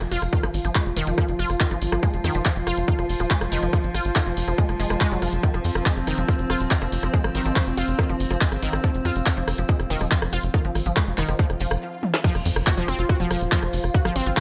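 A tight, tape-warm electronic kick drum sits up front, driving this intense psychedelic trance passage in F minor at 141 BPM in a straight 4/4. Around it, a layered drum and bass kit with overdrive adds a woody snare, bright hats, handclaps, rim clicks, toms and crash cymbal, while a close, jingly acoustic tambourine stays in the background. A punchy sequencer bass built from sawtooth and square waves plucks low and mellow, and a lush, detuned unison pluck riff, wave-folded and ring-modulated, pumps with sidechain and trails through a digital delay. Underneath, an evolving wavetable pad holds sustained chords with chorus, its own reverb and sidechain pumping, and a very quiet, airy, breathy pad with a moving notch floats higher. A faint electronic swell rises from 11.6 seconds into a brief stop and a drum fill, then the drop lands at 12.2 seconds with a quiet impact as this cut from a longer piece drives on.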